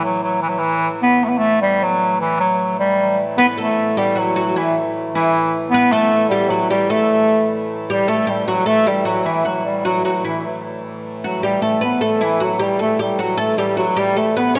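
In a straight 6/8 at 102 dotted-quarter beats per minute, this festive, rustic medieval-style fragment of 14.6 seconds opens with a clear, vintage bass clarinet carrying the melody up front in a classical solo manner, touched by tape echo, over a reedy, breathing drone from a hand-pumped harmonium. At 3.4 seconds a bright, woody oud enters with a plectrum-plucked second line, its fretless double strings sitting forward beside the clarinet. The music moves into a new section at 8.1 seconds, all of it bathed in the wet reverb of a scoring stage.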